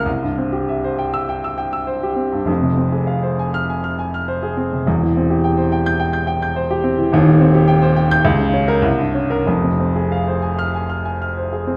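Classical virtuoso piano study in F minor, agitated and stormy, moving in 4/4 with a rubato feel that drifts between 93 and 110 BPM. A single baby grand piano plays alone across the full 11.8 seconds, ranging from a deep Eb1 up to G6, tuned to A4 = 442 Hz. Its tone is warm and open, with a long sustain that lets notes ring, and it sits up front in a recital hall whose moderate reverb adds a 1.4-second tail. The harmony opens on C, settles into Fm at 2.5 seconds, then passes through C/E, Cm/Eb, Bbm/Db and a bare C5 before returning to Fm at 9.4 seconds. This short passage is cut from a longer piece, capturing one turbulent stretch of the study.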